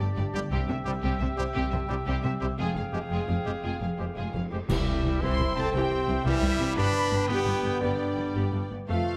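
Soaring and triumphant, this heroic adventure film-score excerpt in a straight 6/8 sets a lush, distant violin melody over secondary lines from a quiet second violin section, airy flutes, a mellow cor anglais and a clear clarinet that drops out at 4.5 seconds, while soft violas, thumb-plucked harp arpeggios, rich cello and double bass sections, sustained chords from mellow French horns and faint trombones, and clear trumpet stabs fill out the orchestra, with a dark cymbal swell, clash cymbals and concert bass drum building from 2.6 seconds into a full-band accent at 4.7 seconds marked by hard-mallet timpani.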